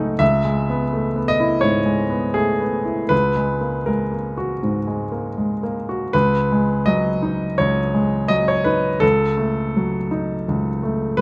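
A solo baby grand piano, natural-toned, up front and with short sustain, plays wistful, reflective neoclassical minimalist music at 82 BPM in 4/4 with uneven, rubato beats, moving through C#m7 and F#add9/C# before shifting at 6.1 seconds to G#m7/C# and D#m7b5/C#, all within a moderate studio reverb in this 11.2-second passage cut from a longer piece, tuned to A4 = 441 Hz.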